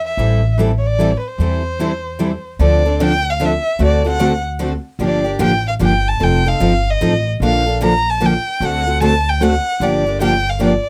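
Acoustic string swing in the jazz manouche tradition, this fiery, swinging excerpt moves in a lilting three-time with a swing feel on the eighth notes. A bowed violin carries the melody up front, its tone warm and expressive, with vibrato, portamento and a smooth top end. Two picked steel-string acoustic guitars supply the accompaniment from 0.2 s: one bright and boxy with fresh strings and a parlour character, the other mellower with audible finger squeak and an auditorium body. Underneath, a pizzicato upright bass on gut strings sits up front with a woody, dark, thumpy tone. After a brief opening passage, the music shifts at 2.6 s into a new section that moves through minor-seventh and dominant-seventh harmony. The close, detailed miking and very dry room keep every instrument intimate and present.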